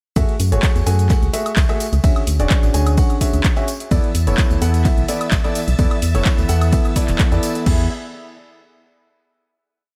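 Piano house at 128 BPM in E mixolydian, a short, euphoric and joyful whole piece built almost entirely as a drop that resolves onto a final E chord at 7.7 seconds. A clear, intimate baby grand piano carries the riff in dotted-rhythm chords with drop2 voicings, its action noise audible, treated with tape echo and sidechain pumping that makes it breathe against the beat. Underneath, a hollow, organ-like FM bass with a fast, decaying attack plays a dark, funky syncopated line, also pumping with the sidechain. An overdriven, punchy electronic kick sits up front in a four-on-the-floor pattern, while a punchy, overdriven analog drum machine adds hi-hats, shaker, handclaps, ride, woodblock and crash, and a dry tambourine with tape echo sits in the background. From 3.9 seconds a shimmering vintage string machine of violins enters with soft-attack sustained chords, bright and chorused, over a harmony that moves through F#m9, Dmaj9#11 and E7sus4, all set in an echo-heavy digital ambience.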